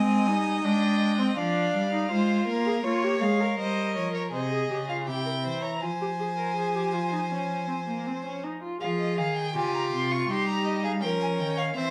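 A string quartet opens together on a serious, solemn baroque-style fugue in F minor at 81 BPM in straight 4/4. The first violin carries the melody up high with expressive vibrato and portamento, set back at a distance, while a clear, focused second violin sits close beneath it, a smooth, even viola fills in the accompaniment, and a rich, focused cello holds the bass up front, all in a small room with light reverb. The harmony moves from Abmaj7 through Ddim/F and Gm7b5 to settle on Fm at 5.8 seconds, and a new section begins at 8.8 seconds before this fragment of a longer piece breaks off.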